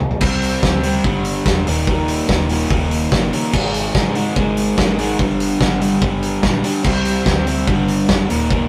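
A loose indie drum kit stands out most, sitting up front with a fat snare, tight kick and dark cymbals, opening on a drum fill before crash, hi-hat and toms carry this short indie rock excerpt at 145 BPM in a straight 4/4. An overdriven electric guitar plays a riff throughout, its tone warm and picked, while a second, distorted electric guitar joins at 0.2 seconds with a brighter, compressed riff set in the background. Beneath them, an overdriven picked electric bass gives a round, punchy, foam-muted low end, recorded direct. The harmony moves through power chords on C, G, Eb and Ab, giving the jangly drive a wistful edge. The sound is that of a rough rehearsal room, with light reverb and warm saturation.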